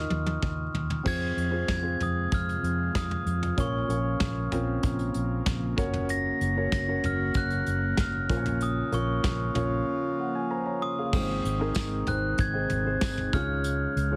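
Heavily compressed with a radio-style polish and a moderate studio reverb, this excerpt of hopeful piano-driven pop moves at 95 BPM in a straight 4/4, centred on Ab mixolydian. A warm concert grand piano sits up front with deep bass, carrying the accompaniment through chords like Fm, Bbm and Gb before settling on Ab and Db. A glockenspiel struck with rubber mallets sings the melody high above, its bell-like ring close-miked, dry and mellow. Underneath, a vintage foam-muted fingered electric bass gives a round, amped low end, while a soft brush kit with dark cymbals and a punchy kick opens with a drum fill. An airy, breathy pad with chorus drifts in behind at 2.1 seconds. After a break with a grand piano fill at 9.9 seconds, a jingly, band-limited tambourine briefly joins in the background at 11.7 seconds.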